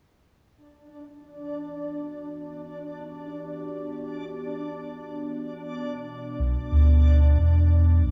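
A round, up-front sub bass with tube saturation arrives only at 6.4 seconds, grounding this spacious, meditative ambient excerpt in E minor at 91 BPM. Before it, a reversed, granular texture glimmers brightly from 0.9 seconds, and a dark, warbling, nostalgic pad with chorus and reverb holds lo-fi sustained chords from 1.6 seconds, moving from Em7 to Bm across a gradual fade-in. A small digital room ambience surrounds the whole.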